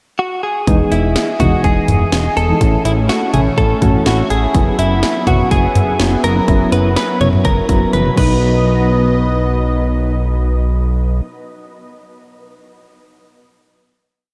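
Wistful yet upbeat, this short synth-pop piece opens with a clean, direct-recorded electric guitar carrying a hook-based melody through analog chorus and tape echo. At 0.7 seconds it is joined by a punchy, layered house drum kit, a fat, saturated analog bass pulsing in eighth notes, and soft, round electric-piano-like synth keys playing syncopated close-voiced chords with chorus and tremolo. A swirling, detuned analog pad enters at 1.0 seconds with phaser and chorus, and the drums, with their cracking snare and syncopated toms, play a fill before stopping at 8.3 seconds, leaving the other parts to carry the final hit in a dreamy mix soaked in huge ambient reverb.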